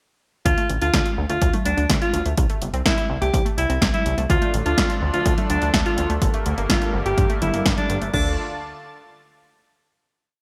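Danceable and melodramatic, this whole italo disco piece in D minor runs at 125 BPM with a punchy four-on-the-floor electronic kick and a house drum kit of congas, crash, snare and tape-warm hats under a glossy, nasal, chorused synth bass playing sequenced sixteenth notes, a round analog pluck arpeggio with 12-bit sampler grit tucked in the background, and an up-front alto saxophone repeating a roomy, vibrato-laden riff with delay, while a lush, airy unison pad joins at 4.3 s before everything resolves onto a final D minor chord at 8.1 s in bright 1980s-style digital production.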